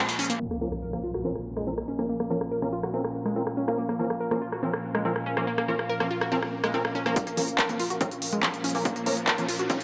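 Driving peak-time techno at 142 BPM in 4/4 with a straight feel, this intense clip sits in Bb minor, cut from a longer piece. A dark, evolving analog drone holds the low end from the start, chorused and pumping against the sidechain, while an up-front techno drum kit of crash, handclaps, smooth hi-hats and rim clicks carries a tape-warm, layered character from a small room. A round, bright analog pluck of detuned sawtooth and square waves with ring modulation and a noise layer drives the riff through tape echo, and an aggressive, thick rave stab, warbling with 12-bit sampler grit, sits in the background under a filter sweep that runs from 0.4 s onward. An ethereal, mellow pad with a sub octave drifts in at 1.2 s, and background impacts, swells and a riser mark the opening and the closing build. At 7.2 s a punchy electronic kick joins as the build-up begins, the whole mix wrapped in a lush hall reverb.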